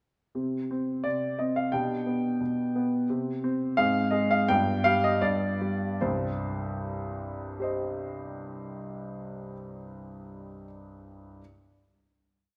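This is a complete classical-period piano sonatina, brief, restless and serious in mood, moving in a straight duple metre. A solo grand piano carries it from start to finish, its tone warm and present, sitting up front with long sustain as it ranges from C2 up to G5. The writing pairs a single-line melody with broken octaves, passing through harmonies that settle on a G7 before resolving. The pace begins slowing at 2.4 seconds, easing into a sustained C minor final chord that arrives at 6.0 seconds and rings on. A recital hall's lush reverb surrounds the instrument, giving each note a long, resonant tail.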